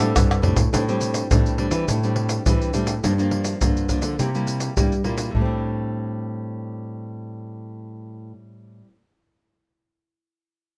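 A close, dry percussion group of maracas, a tight surdo, pandeiro and tamborim, played with hard hands, sits up front, opens with a drum fill at 0.3 seconds and drops out at 5.5 seconds in this yearning, bittersweet samba and choro fragment in A minor at 104 BPM. An up-front, warm nylon-string guitar carries the accompaniment with thumb-plucked strokes and audible finger squeak, while a second nylon-string guitar, bright, full-bodied and fingerpicked on fresh strings, holds the bass line through Am7, Gm7 and C7 and back to Am7. Both guitars have a classical character in a moderate studio reverb.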